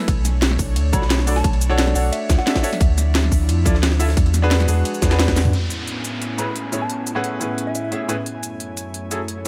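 Dreamy and warm, this short cut of liquid drum and bass opens straight into a drop. A tight, overdriven electronic kick sits up front beside a layered kit of cracking snare and crisp hats that carries a small-room tone. Underneath, a gritty, pitched-up jungle sampler-style kit with a high-tuned snare adds a compressed, tape-like texture from the background, its hats and snare filtered. A round, deep sine sub bass holds the low end as the chords move from Bm9 through Dmadd9 to E9, while a brilliant, polished grand piano with delay and an airy, breathy pad with chorus fill out the harmony. A soft, pure FM bell carries the melody in brief phrases, colored by chorus, phaser and digital delay. After a drum fill and band accent, the kick, sub and sampler kit drop away by about 5.5 seconds, leaving piano, pad, the main kit and a downlifter over Amaj9 and F#m9, with the bell returning at 6.4 seconds.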